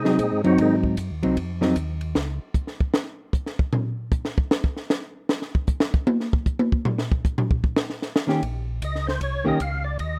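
This soul jazz organ trio music has a greasy, swinging mood, heard as a short cut from a longer piece. A percussive tonewheel organ carries the melody with a fat, lightly overdriven tone, key click and third-harmonic percussion, coloured by chorus vibrato and a slow rotary speaker. A dark, clean hollow-body electric guitar plays fingered accompaniment. A second, mellow tonewheel organ supplies a round bass line through its own chorus vibrato and slow rotary speaker. The compact cocktail kit is acoustic and dry, with dark cymbals, a high-tuned snare and a punchy kick, and it takes a solo from 2.2 to 8.4 seconds while the other parts drop out, returning near the end. Light studio reverb surrounds a rough, up-front home demo mix that moves from an Ab7 chord, through the stretch of unaccompanied drums, to an Eb7(no3).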